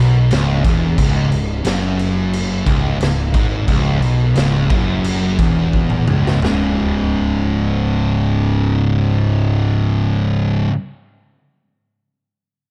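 Sludgy and heavy, this short stoner and doom metal excerpt in C# minor at 88 BPM pairs two up-front thick fuzz guitars, one dark and one warm, on a distorted riff with a growly overdriven picked bass and a raw garage drum kit, punchy, gritty and saturated in a pumping stone room, that slows from 1.0 seconds, plays a fill from 5.7 seconds, and stops at 6.6 seconds as the guitars shift to a C#5 power chord in a dark small-room production.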